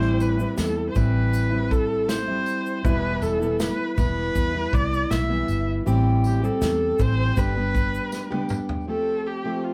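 Heard from further back in a small, wet room, this heartfelt, easy-going acoustic pop excerpt has a roomy, natural ambience. Up front, a single bowed viola carries the melody with a rich, expressive tone, vibrato and portamento, set in plate reverb. A fingerpicked, plugged-in jumbo steel-string acoustic guitar, also up front, supplies a full-bodied accompaniment, while a vintage foam-muted electric bass adds a dark, round, amped low end until 8.0 seconds. A natural country drum kit with a punchy kick, medium-tuned snare, shaker and toms keeps a straight feel in 4/4 and plays a fill from 8.1 seconds, with a jingly, compressed tambourine sitting in the background. The harmony moves from Am7 to Em, back to Am7 and on to G before landing on Fadd9 at 8.9 seconds.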